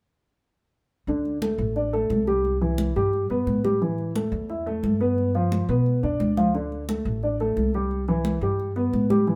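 Danceable and relaxed, this short fragment of Cuban son and guajira finds a dark, mellow concert grand piano, boxy and up front, rolling arpeggios over chords such as Cmaj7, Asus2 and G7, while a woody, thumpy pizzicato upright bass and thick-skinned, warm congas play together from 1.1 s, all captured as a band live in one room with light reverb.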